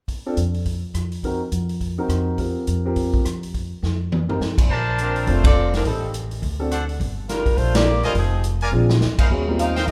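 A brisk swing in 4/4 at 208 BPM drives this joyful, brassy big-band excerpt in Bb major, cut from a longer piece, with a roomy drum kit, a woody pizzicato upright bass and a clear, long-sustaining baby grand piano opening the way from the first second. A drum fill at 3.8 seconds leads into the second section, where a smooth, lightly vibrato saxophone section takes the melody and a brilliant trumpet section adds stabs, with band accents at 5.4 and 7.7 seconds. A moderate recital hall reverb surrounds the ensemble as the harmony moves through rich jazz chords from Bbmaj9 toward Eb6.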